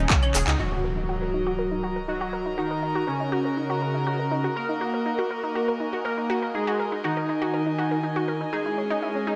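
Melodic techno in a dark, hypnotic mood, this excerpt opens with a juicy, resonant polysynth melody, a mellow, airy supersaw second line and a nasal, warbling analog pluck playing arpeggios, all three pumping under chorus and delay while the pluck carries a filter sweep. A deep, rumbling detuned saw bass and an overdriven, up-front techno kit of claves, handclaps, smooth hats and shaker appear only briefly, the drums delivering a short fill ahead of a band accent before both stop at 0.6 seconds. An electronic impact then rings out as a dark, reedy chamber string section enters with bowed, gut-string tone, all set in a moderate digital room.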